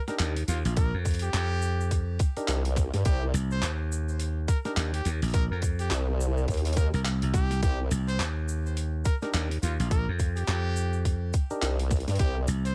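A brilliant, close-miked jazz trumpet opens this swaggering, playful glitch hop excerpt in C minor at 105 BPM with a swung 16th feel, its melody roughened by vintage 12-bit sampler grit and digital delay, as percussive, stringy clav stabs with phaser and sidechain pumping, a gritty pitched-down overdriven boom bap kit of handclaps, hi-hat and high-tuned snare, a grainy background egg shaker and a growly, punchy slap bass enter almost at once, an up-front tight electronic kick follows at 0.8 seconds, and a detuned, saturated formant-sweep wobble bass with chorus joins at 2.5 seconds over a Cm7 chord in a dry mix.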